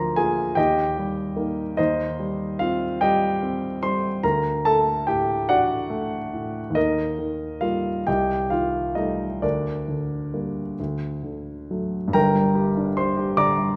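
In a rubato 6/8 lilt at about 43-50 BPM in dotted quarters, this bittersweet, stormy romantic character piece for solo grand piano, cut from a longer piece, moves through G minor harmonies such as Eb, Cm/Eb, D and Am7b5/C before settling on Gm at 12.1 s, its polished, up-front tone spanning G1 to D6 inside a wet recital-hall reverb.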